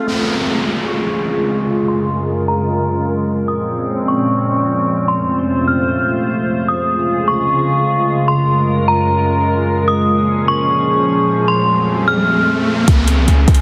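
Melancholic and ethereal, this atmospheric cloud-rap cut moves at 150 BPM in a half-time feel, drifting through a Db, Gbmaj7, Bbm7, F progression that cycles twice. A glassy FM pad holds sustained chords up front throughout, its slow attack and long release softened by ensemble chorus, built-in reverb, a low-pass filter and sidechain pumping, while a filter sweep runs across most of the passage. Above it, a metallic FM bell carries the melody in a high register, ringing and inharmonic with a vintage, warbling quality shaped by chorus, a low-pass filter and tape echo. Electronic downlifter and riser effects open the piece and return near the close, with a riser building from 10.8 to 12.9 seconds. At 12.9 seconds a deep, boomy 808-style bass and a smooth R&B drum kit of soft kick and metallic hi-hats arrive up front, just as the fragment cuts off. The mix carries light reverb and digital ambience under a heavily compressed, radio-like sheen.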